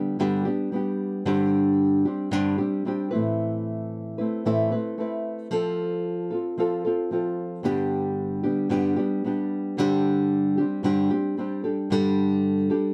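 Pop in C major at 113 BPM, this easy-going, heartfelt excerpt features a lone nylon-string guitar playing from 0.0 to 12.9 seconds, its thumb-plucked tone acoustic, small and placed up front. Close, detailed microphones and light reverb frame the guitar as it moves through chords such as Csus2/G, Amadd9 and F before settling on Gsus2, spanning G2 to B4.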